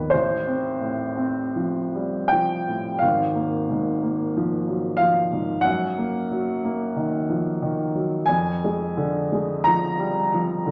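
Rubato and unhurried at roughly 38-47 BPM in 4/4, this mournful, yearning romantic nocturne fragment for solo baby grand piano sits open and up front, ranging from deep Ab1 bass to Bb5 in the treble as its harmony drifts from F/A through Bb5/Ab and Ebm/Gb to Ddim/F, all bathed in the lingering reverb of a recital hall.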